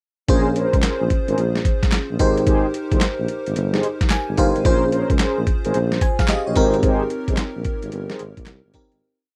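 A hard-swung, drum-machine beat drives this confident, bouncy new jack swing piece, its gritty, overdriven sampler-style kit sitting up front with a thumpy kick and a snare layered with handclaps. A mellow tuba plays a swung synth-funk bass line with light vibrato and muted ghost notes, while a lush, dreamy FM electric piano with a soft pad layer pushes rootless chords over Bbm9 and Abmaj7 and adds a short fill at 3.8 seconds. Dark, round synth brass with chorus and slapback echo punctuates with short syncopated stabs until 8.2 seconds, all in a dry, close 1970s-style studio sound that fades out from 6.8 seconds.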